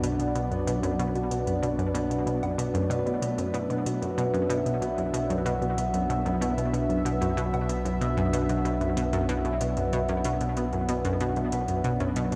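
Ambient, sequencer-driven space music at 94 BPM in 4/4, this hypnotic, expansive piece sits on a single B minor chord for its 12.4 seconds, cut from a longer work. Up front, a bright, detuned sawtooth pluck repeats a low riff between F#2 and B2, its fast attack decaying through chorus and analog delay. A thumb-plucked concert harp rings out arpeggios from B2 to B4, echoed by analog delay, while a sweeping resonant pad of wave-folded sawtooth and triangle tones holds sustained chords with a slow attack and filter swell, shimmering under chorus and phaser. Beneath them, a round, deep analog bass sustains a dark B1, and quiet electronic hi-hats and woodblock add overdriven, metallic ticks that sound re-recorded in a large room. A huge ambient reverb with a 9.0-second tail surrounds the mix and deepens the sense of drifting space.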